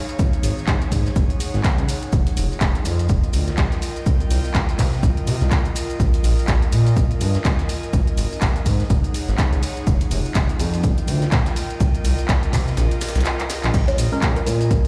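Smooth and hypnotic, this deep house passage at 124 BPM in Bb dorian rides a swung 16th-note groove, where a punchy, up-front electronic kick and a dark-hatted house kit with crash and handclaps sit over a very quiet, gritty breakbeat-style layer of hi-hat, shaker and snare, grainy maracas in the background, a mellow gliding sawtooth bass with tube saturation and sidechain pumping, and an airy, breathy chorused pad that pumps softly through chords from Fm7 and Cm7 to Bbm7, until the kick drops out at 12.8 seconds for a drum fill and a short woody kalimba phrase with dub echo arrives at 13.9 seconds, joined by a hollow, dark organ stab at 14.1 seconds.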